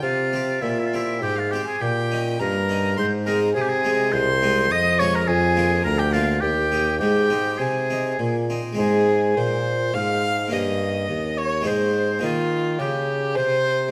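A rich, expressive violin carries the melody with vibrato and portamento over a clear, distant oboe second line, an airy French-style harpsichord plucked on two sets of strings, and a mellow, close bassoon bass in this flowing, introspective baroque-style sonata movement in Ab major, taken from a longer piece at 104 BPM in 3/4 with a rubato feel and set in a recital hall's lingering reverb.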